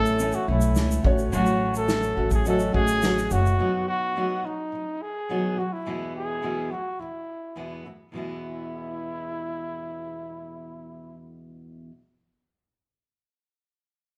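A straight 4/4 groove opens this sunny, carefree acoustic pop fragment. An unplugged drum kit plays kick, snare and shaker with bundle sticks, and a pizzicato upright bass on steel strings adds a woody low end. A dark, mellow upright piano sits in the background with audible action noise and long sustain. From the start, a warm, fingerpicked dreadnought acoustic guitar plays up front through the A, F#m/A, B and E chords, and above it a breathy, whispered trumpet sings the solo melody with vibrato, soft attacks and scooped notes. Drums, bass and piano all fall away at 3.6 s, while the guitar carries on until 11.9 s and the trumpet until 11.2 s, all in an intimate live-room sound with moderate studio reverb and lossy artefacts.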